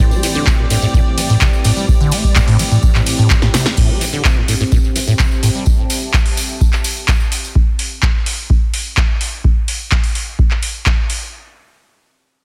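This acid house excerpt opens on a drop at 127 BPM in A minor, hypnotic and gritty. A deep electronic kick sits up front, a squelchy, resonant sawtooth acid bass riff runs through phaser, tube saturation, subtle chorus, cassette tape and digital delay, and a lush, detuned unison pad holds an Am7 chord under chorus and sidechain pumping. Alongside them, a moody ambient pad with sine and sub-octave layers adds mellow texture through its own reverb, chorus and pumping, while a jingly, close and dry tambourine sits in the background. An analog drum machine supplies a punchy snare, handclaps, metallic hi-hats, ride and crash, with a short room on snare, clap and hats, and a drum fill at 3.4 seconds leads out of the drop. The bright unison pad stops at 3.8 seconds as the ambient pad begins fading out, and the bass drops away at 5.6 seconds. The fading ambient pad and the tambourine linger until about 7.5 seconds, after which kick and drum machine carry the groove in a dense, heavily limited modern master with digital ambience.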